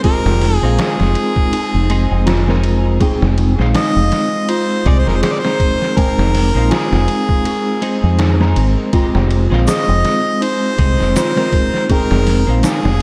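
A dark, smoky trip hop excerpt in F minor at 81 BPM opens on an Fm7 chord, with a grainy, tape-echoed harmonica melody over a bright, twangy twelve-string electric guitar shimmering with harmonic tremolo, delicate bell-like celesta arpeggios in the background, and a muffled, pitched-down sampler-style drum kit with a thumpy kick and a lightly swung 16th-note feel. From 0.3 seconds a round, tube-saturated dub bass sits up front in the mix. A faint, band-limited egg shaker joins at 9.7 seconds, all within a dreamy, reverb-soaked hall.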